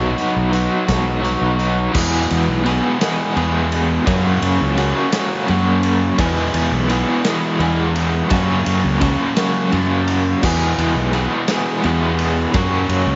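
A gritty, small-room indie rock excerpt in a straight 6/8 at 57 BPM, upbeat yet wistful in E lydian, where an up-front, double-tracked crunchy guitar picks a riff through tremolo over a dark, punchy fuzz bass while a saturated garage kit with a boomy kick and a bright stone-room crash, hi-hat, ride and snare drives from 0.2 seconds as the chords move between E and F#.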